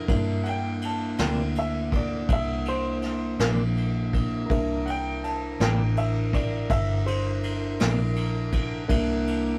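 Rollicking and swaggering, this slow blues excerpt in 12/8 moves at 54 BPM in C mixolydian over a C9 chord. A clear, woody upright piano takes the solo from the start, backed by a mellow, flute-like tonewheel organ holding sustained chords through a slow rotary speaker, a dark, foam-muted fingered electric bass, and an up-front brush kit with punchy kick, snare and ride. A clean electric guitar with tremolo sits in the background from 1.2 to 8.0 seconds, all captured in a rough rehearsal-room sound with tube saturation and moderate studio ambience.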